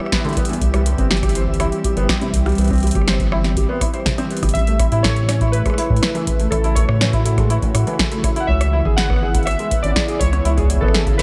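IDM with a wistful, intricate mood, this brief excerpt from a longer piece moves in a straight 4/4 pulse inside an echo-heavy mix touched by light digital ambience. A detuned, nostalgic pad holds sustained chords from the opening, its sidechain pumping under chorus and built-in reverb, while a very quiet granular layer flickers above it. A felt-muted upright piano spins soft, intimate arpeggios through vintage 12-bit grit, tape echo and shimmer reverb, and a round, dark analog bass joins at 0.6 seconds as the loudest part. The drums pair a deep, tape-toned electronic kick with a drum machine of punchy snare, rim click and metallic hats fed through analog delay, both re-recorded in a small room, with a short fill from 4.1 to 4.5 seconds. At 4.5 seconds warbling lo-fi synth keys enter with the melody, their ring-modulated, filter-swept tone decaying into chorus, delay and shimmer as the harmony moves from Em and C to A and then C#m7.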